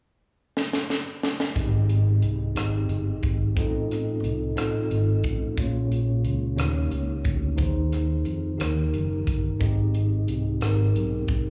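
Heard live through a club PA with small-room reverb, this hopeful, jubilant slow gospel fragment in 6/8 at 60 BPM in Ab major opens with a drum fill from 0.6 seconds on a crisp fusion kit with a high-tuned snare, tight kick, hi-hat and rim click, before a clean, mellow tine electric piano and an up-front, direct fingered electric bass enter at about 1.5 and 1.6 seconds respectively to carry a progression from Abmaj7 through F7/A, Bbm7 and Eb7 back to Abmaj7.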